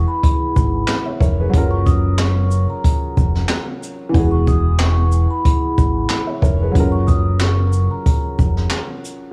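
A jazz brush drum kit with a punchy kick, high-tuned snare, hi-hat, shaker and handclaps sits up front from 0.2 seconds, swinging lightly at 92 BPM in this soulful boom-bap hip-hop excerpt in F# major, where a round, dark dub-style fingered electric bass holds the low end, a worn, intimate grand piano with audible action noise and a cassette tape character plays Eadd9 and F#maj7 chords, and a ringing vibraphone played with soft mallets carries the melody through analog delay and slow motor vibrato, set in small room ambience.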